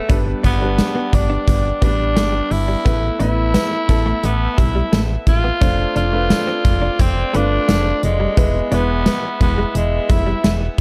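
A steady, straight 4/4 pulse at 87 BPM opens this short cut from a longer 1980s-style pop piece in A minor, driven by a gated drum kit up front with a tight kick, medium-tuned snare, hi-hat and tambourine ringing in a big, airy room. Beneath it, a punchy, round FM bass sits up front with a fast attack, while a clear baby grand piano plays accompaniment and a muted French horn section holds nasal, metallic sustained chords in the background. A direct-recorded clean electric guitar repeats a compressed, picked riff further back, coloured by ensemble chorus and delay. Over this, a breathy, raspy tenor saxophone carries the melody with a gritty, vintage pop tone and a touch of delay. The chords move from G to Asus2, F6 and finally E at 8.4 seconds, giving the dark, small-room production a nostalgic yet urgent feel.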